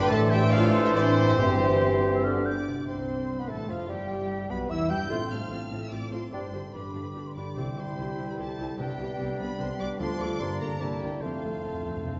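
A close, expressive section of violins carries the melody with rich vibrato in this graceful, cheerful excerpt from a fast, dramatic romantic symphonic movement in C major, moving at 146 BPM in 3/4. Around it, an airy, hollow flute, a clear oboe, a bright clarinet and a very quiet, lush second violin section weave second lines, while a mellow bassoon and an intense viola section fill in the accompaniment. French horns hold distant, roomy chords, joined at the start by a bright trombone section and short stabs from a mellow trumpet, both of which drop out by 2.5 seconds. A ringing, fingerpicked harp plays arpeggios in the background, and smooth, even cellos and double basses anchor the bass. Soft-mallet timpani with a round tone come and go and close with a fill at 11.2 seconds, all set in a reverberant scoring stage heard from further back with a softened top end.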